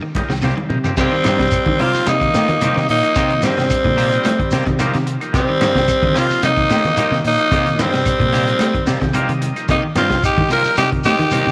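Afrobeat excerpt at 110 BPM in C minor with a defiant, intense mood, where a growling, raspy tenor saxophone leads up front from 1.0 seconds alongside a bright alto saxophone second line with scooped notes, over a round fingered electric bass, a crunchy breakbeat drum kit with dark cymbals that opens with a fill, slightly broken-up guitar arpeggios, clean fingered guitar stabs, a buzzy overdriven combo organ that takes a fill at 8.6 seconds, and quiet congas, grainy shekere and woody claves, all on a Cm7 chord in a moderate plate reverb.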